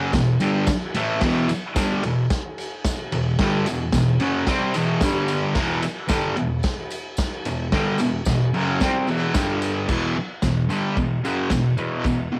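Gritty and menacing, this short garage rock cut from a longer piece moves at 111 BPM in a straight 4/4 feel, centred on E minor. A fuzz guitar drives the riff from the first moment to 12.4 seconds, its bright, double-tracked, compressed tone sitting up front with fuzz distortion and a cassette-tape grain, ranging from E2 to C4. The vintage drum kit enters at 0.1 seconds with crash, ride, snare and kick, sounding natural and acoustic, with dark cymbals, a medium-tuned snare, a punchy kick and a rolled-off top, also placed up front and coloured by cassette tape. A jingly tambourine sits close but in the background, adding a warm shimmer of percussion alongside the kit. The harmony holds mostly on Em, briefly touching G5 around 5.0 and 9.4 seconds before a new section begins at 9.9 seconds. A small room reverb and home cassette recording give the whole piece a raw, boxy intimacy.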